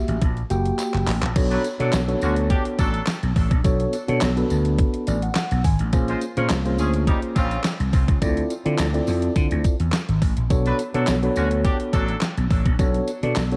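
Early-eighties boogie funk at 105 BPM in a straight 4/4, funky and danceable, with a mellow tine electric piano accompanying up front, a growly, punchy slap bass and a thumpy, overdriven 8-bit drum machine with handclaps, hi-hat and crash, while a jingly tambourine sits in the background. A drum fill at 0.8 seconds leads into the main groove at 1.4 seconds, and just after, at 1.5 seconds, a tight, clear horn section enters as a second line with light vibrato and tape echo; the electric piano takes a short fill at 4.8 seconds. The harmony moves from F#7b9 through Bm9, Bbm9 and Dm9 back to Bm9 under light reverb, in a section cut from a longer piece.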